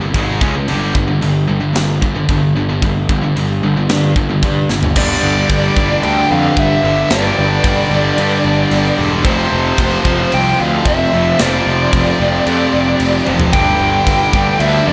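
Relentless, dark heavy metal excerpt in which two picked rhythm guitars, one overdriven and one scooped and high-gain, churn out riffs in the background over a growly, fuzz-laden picked bass up front and a tight, polished drum kit with bright china and crash cymbals, until a drum fill at 4.7 seconds tips the music into a half-time section at 5.0 seconds, where a double-tracked high-gain guitar adds weight, a bluesy lead guitar of dark tone sings a high melody with slapback echo, and a very quiet con sordino string section holds veiled, bowed chords, all within a lush hall reverb that gives a big arena sound.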